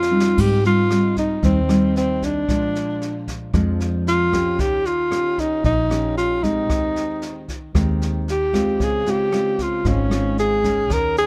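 A brushed drum fill on a studio kit with dark cymbals, a high-tuned snare and a boomy kick opens this smooth, wistful bossa nova fragment in a straight 4/4, as a fingerpicked nylon-string guitar and a breathy tenor saxophone begin together. The fingered electric bass joins at 0.4 seconds with a foam-muted tone, supporting a progression that moves from Abmaj7 through Bb7 and Eb7 to Abmaj7/Eb and Dbmaj7. Up front, the saxophone carries the melody in a whispered, intimate subtone with vibrato, soft attacks and scooped notes, all set in a dry, dark, warm production.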